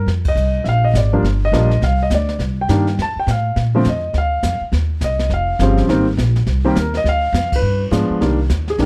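A dark, dry production with little reverb frames this brief, smoky jazz piano trio cut from a longer piece, swinging briskly at 206 BPM in 4/4. The warm grand piano carries the melody up front over pizzicato upright bass with a woody, close tone, while the brushed drum kit sits lower in the mix with dark cymbals, a medium-tuned snare and a boomy kick. The band hits accents together at 0.2 and 7.5 seconds, as the harmony moves from Bb7 through Ebmaj7, Cm9, Abmaj7 and G7b9 before settling on Cm9.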